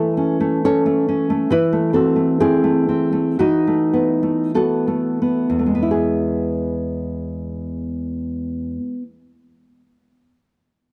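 A rubato 2/4 pulse drifting between 40 and 70 BPM slows down from 0.6 to 5.9 seconds, as this romantic solo classical guitar piece in E major moves tenderly through A/E, Am/E and B7/E before settling on E at 5.9 seconds. The fingerpicked nylon-string guitar, spanning E2 to C#5 and tuned to A4 = 441 Hz, sounds dark, woody and full-bodied on old strings, playing up front until 9.2 seconds. The dry, close 1970s-style studio sound carries light reverb and a small room ambience, and the passage is cut from a longer piece.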